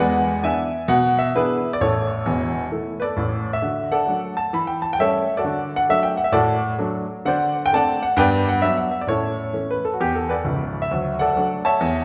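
A wet recital-hall reverb with a 1.6-second tail surrounds this recording, and the highest treble is rounded off, lending the room a soft, airy sheen. At its center sits a solo baby grand piano, placed up front with a clear, natural tone and short sustain, playing stride jazz across a range that reaches from deep bass notes to the upper middle of the keyboard. The mood is playful and exuberant, carried by a swung eighth-note feel in four. The harmony moves from a dominant seventh opening into a second section at 3.6 seconds, where a cycle of major and seventh chords, including a major seventh colour at 8.2 seconds, leads the ear back home. This short excerpt is cut from a longer piece and runs about 12 seconds.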